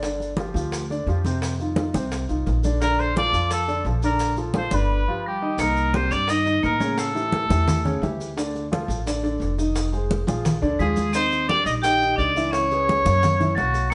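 Recorded as a live band in one room, the sound has a moderate stone-room reverb and a soft, rolled-off top end. This lively, danceable Afro-Cuban jazz cut moves at 173 BPM in a straight 4/4 in Bb major, taken from a longer piece. A woody, thumpy pizzicato upright bass sits up front with a grand piano accompanying. Close, dry congas with a bright, thin, damped skin join the percussion, along with tight, high-tuned bongos that have a compressed, saturated edge and sit in the background, and grainy, mellow maracas in a live room. At 2.8 seconds a warm, vintage-toned trumpet takes the melody in jazz style with light vibrato and scooped notes, joined by a metallic, ringing vibraphone played with hard mallets as a second line in the background. Both drop out at 8.2 seconds and return at 10.8, as the harmony travels from Bbmaj7 through Cm7, Dm and Eb6 before ending on Dbm7 and Gb7.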